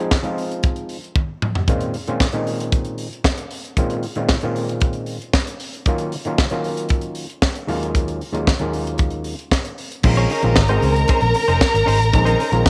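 An overdriven clav, stringy and up front through a combo amp, drives this glamorous disco excerpt over a tight funk drum kit with a high-tuned snare and a drum fill at 1.2 seconds, moving through Fm7, Bbm11 and Ebm7 chords until 10.0 seconds, when a round fingered electric bass, a clean direct-recorded electric guitar and a lush, biting symphonic string section with vibrato join in a small, lightly reverberant room.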